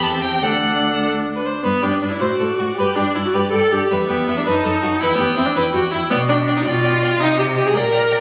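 The viola stands out in this lively, cheerful classical-period string quartet movement, sitting up front with a soft attack, expressive vibrato and portamento as it carries the accompaniment. Above it, the first violin sings the melody with a smooth, even, vibrato-rich line, while the second violin weaves a warm second part with a silky top. The cello anchors the bass with a focused, bowed tone that sounds slightly distant. Moving in a quick 6/8 at 108 dotted-quarter beats per minute with a rubato feel, the piece sits in G major. After a brief opening phrase, a new section begins at 1.6 s and turns toward E minor around 3.9 s before closing on a C minor chord at 7.2 s. The sound was captured on a phone in a recital hall and then given added studio reverb and compression, leaving a wet, reverberant space around the players in this short excerpt cut from a longer work.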